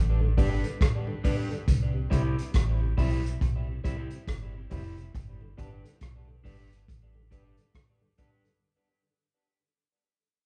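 A live, one-room band sound bathed in moderate large studio reverb carries this uplifting roots reggae piece at 69 BPM with swung sixteenths, fading out throughout. A dark, round, punchy fingered dub bass and a muffled, lo-fi vintage drum kit with a tight kick, hi-hat and rim click sit up front, while a fat tonewheel organ with key click, light overdrive, slow rotary speaker and tape echo and a dark, slightly broken-up picked electric guitar dressed in spring reverb and tape echo fill out the G and C chords.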